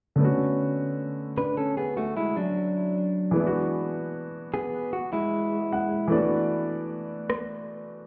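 A warm baby grand piano with a short sustain carries this moody, late-night contemporary R&B piece in B dorian at 76 BPM, playing chords from Bm9 through E9 to D69 and adding a fill at 5.3 seconds. A bright, clean electric guitar, picked and compressed and recorded direct, enters at 1.4 seconds with delayed arpeggios, and a brief electronic rim click sounds at 7.3 seconds. The whole mix sounds muffled, as if heard through a wall, with a club reverb.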